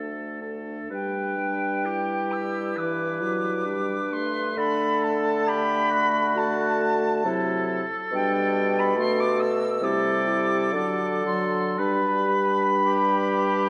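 A warm oboe, clear French horn, dark clarinet and mellow bassoon open this serene excerpt from a slow romantic wind-quintet movement in G major at 66 BPM, played with rubato, before an airy, silvery concert flute with vibrato and a crisp attack takes the melody up front at 0.9 s, with the oboe on a second line, horn and clarinet accompanying, the bassoon on bass, and the harmony moving from G through D, G/B, Am7/C and D7 back to G in a reverberant concert hall.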